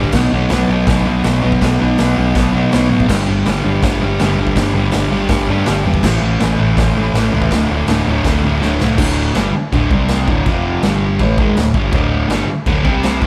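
A double-tracked fuzz guitar sits up front, hammering out a distorted, picked riff of power chords over a rowdy, swaggering garage rock groove in straight 4/4. Beneath it, a dark, round hollow-body bass growls with overdrive, while a raw, gritty drum kit with a boomy kick and a bright stone-room sound drives the beat with snare, hi-hat and crash. The band plays live together in a large studio with moderate reverb, and a drum fill at 8.6 seconds launches a new section at 9.0 seconds, where the chord changes come faster.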